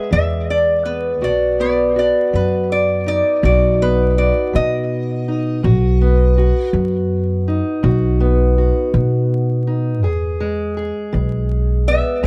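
A dry, close recording in a 1970s studio style, with vinyl crackle over the sound, carries a soulful, swaggering acoustic country blues in 12/8 at 54 BPM, cut from a longer piece. Up front, a metallic, nasal lap resonator guitar, played with fingerpicks and a slide, sings the melody between B4 and E5 through tape echo. Beside it, a dark, boxy parlour steel-string guitar fingerpicks the accompaniment, and a woody pizzicato upright bass with steel strings joins at 0.1 seconds, as the harmony moves from E to B at 1.2 seconds and back to E at 10.0 seconds.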